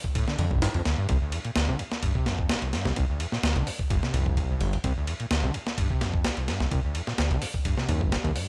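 A squelchy, resonant acid bass riff with a saturated, decaying filter pluck and an ensemble chorus cuts through this energetic, raw breakbeat excerpt, entering at 0.2 seconds over a shift from Dm to Cm. Beneath it, a fat, detuned sawtooth bass arrives up front at 0.4 seconds, holding sustained, evolving tones shaped by a filter sweep. The sampler-style drum kit starts things at 0.0 seconds with a thumpy kick, a medium-tuned snare, hi-hat and ride, sounding compressed, gritty and tape-warm in a small room, all set in a digital ambience.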